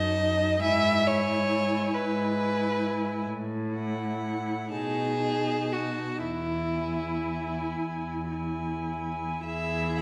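Lyrical and warm, this fragment from a slow, romantic classical string quartet movement in E major sways in a rubato 6/8 at roughly 34-47 BPM (dotted quarters). A clear, distant first violin carries the smooth melody high above a focused, up-front second violin, while a rich viola sits back with a focused accompaniment and a rich, expressive cello anchors the bass with soft attacks and gentle portamento, all four bowed with vibrato. A moderate scoring-stage reverb surrounds the ensemble as the harmony moves through B7 and comes to rest on E at 6.2 s.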